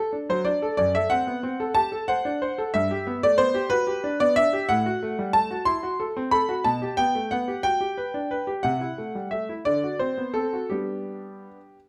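A graceful, cheerful classical-period piano sonatina in 6/8, played with rubato, heard as a short section cut from a longer piece. A solo concert grand carries everything from 0.0 to 11.8 seconds, its tone clear and slightly worn, with deep bass, short sustain and an up-front, natural presence. Close, detailed miking and light reverb keep the intimate sound, while the harmony moves through dominant and diminished colours before settling home on the tonic.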